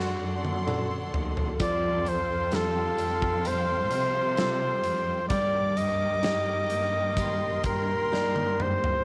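Pop ballad at 65 BPM in an emotional, heartbroken mood, led by an up-front flugelhorn singing with vibrato, scooped notes and slapback echo over a background piano, bright picked acoustic guitar arpeggios, lush, focused bowed strings holding chords, a cello section carrying the bass with portamento, and a huge arena drum kit entering at 0.4 seconds with a punchy kick and fills, all set in light studio reverb as the chords move from D/F# through Fadd9 to Ebmaj7/G.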